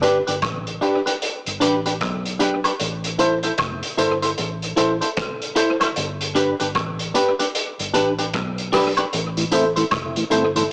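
This short cut from a longer roots reggae piece has the small-speaker sound of a home cassette recording, bathed in a moderate spring reverb. At a meditative 76 BPM in 4/4 with a loose sixteenth-note swing, it moves gravely between G and A minor. A vintage drum kit sits up front with a punchy kick, hi-hat and rim click, its rolled-off top and pumping small-room sound trailing tape echo, while a round, foam-muted fingered bass rumbles darkly underneath with tube saturation. A bright, twangy, compressed electric guitar picks out accompaniment, wobbling with warbly pitch drift and tape echo, alongside stabs from a reedy, worn and slightly out-of-tune electric piano heard through its built-in speakers with a phaser. Close, dry tambourine and woodblock tick away in the background. Near the end, at 9.4 s, a mellow, lightly overdriven tonewheel organ slips in with chorus vibrato and a slow rotary speaker.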